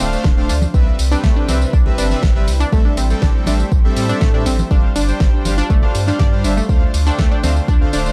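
A steady, straight 4/4 pulse at 121 BPM drives this progressive house excerpt, with a deep, tape-saturated electronic kick sitting up front from 0.2 seconds and a deep house kit of hi-hat, fat snare and tambourine filling in around it, while congas murmur in the background from 0.6 seconds. Underneath, a round, sine-like analog bass anchors the D dorian harmony and pumps against the kick, as do all of the melodic layers. An analog pluck spins bright, detuned arpeggios through chorus and tape echo, and a soft supersaw adds smooth, airy stabs, also carried by tape echo. Behind them, a lush unison pad holds thick, slow-attack chords colored by chorus and phaser, moving from Dm7 through Cmaj7, Am7 and G7sus4 before returning to Dm7. The mood is driving yet expansive, and the dry, dark production keeps every layer close and warm rather than spacious.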